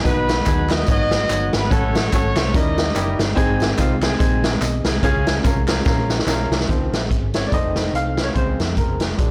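A bright, woody upright piano and a soft, flute-like tonewheel organ through a rotary speaker open this jubilant, reverent uptempo gospel excerpt, joined at once by a swinging big-band drum kit with a boomy kick, a dark, round hollow-body electric bass with transformer saturation, and tambourine and handclaps in the background. A tight, distant horn section carries the melody until 3.3 seconds, and after a drum fill at 5.9 seconds the piano takes a solo from 6.7 seconds over the bass, organ and drums. The recording is blown-out and overdriven, set in a large studio reverb.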